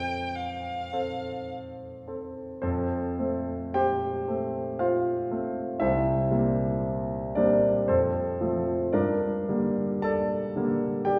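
A violin and a grand piano open together in this serene, lyrical romantic duo, cut from a longer piece and moving in an unhurried three-beat metre with a flexible rubato feel. The rich violin carries the melody in a brief, expressive phrase, sung by one bowed player with vibrato and portamento, its tone sitting up front yet sounding distant, and it plays only until 1.5 seconds. The clear concert grand piano supplies the accompaniment throughout, reaching from deep bass notes up into its upper register with a polished, present touch and short sustain. Its harmony rests on F, passes through C7 at 5.8 seconds, returns to F and then moves to Gm at 8.9 seconds, holding there until the close at 11.2 seconds. A wet recital hall reverb frames the duo, placing the listener further back in the room.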